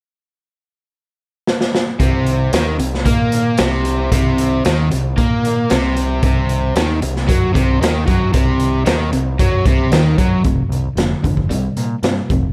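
A raw, small-room sound with light reverb frames this swaggering, driving classic rock excerpt, cut from a longer piece and moving at 114 BPM in a straight 4/4. The drum kit comes in at 1.5 seconds with a fill, its punchy kick, medium-tuned snare and hi-hat sitting up front with a gritty, saturated character, a pumping room and a rolled-off top. At 2.0 seconds the crunchy overdriven guitar riff arrives, bright and double-tracked, played with a pick in a low-to-middle register and placed up front. Alongside it, the picked electric bass growls with a round, overdriven tone, heard both direct and through an amp. The harmony settles on C minor before the closing stretch from 10.4 seconds, where the parts shift to F5 power chords and then C5.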